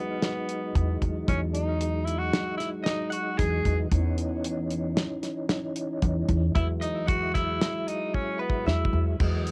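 Recorded at home on cassette with a light reverb, this short cut from a longer progressive instrumental has a homespun sound and a bright, driving mood in an uneven 5/4 meter with a straight feel. A raspy, gritty tenor saxophone carries the melody up front with a punchy, vintage pop-style tone and a touch of tape echo. Beneath it, a round, mellow tonewheel organ supplies the accompaniment, colored by chorus vibrato and a slow rotary speaker. A dry, damped 70s drum kit with a tight kick and rolled-off top sits forward alongside a woody, dark pizzicato upright bass anchoring the low end on steel strings. From 2.8 seconds a clean, compressed semi-hollow electric guitar adds a picked second line in the background, and a drum fill arrives at 8.1 seconds as the harmony moves from Emaj7 through C#madd9/E to E.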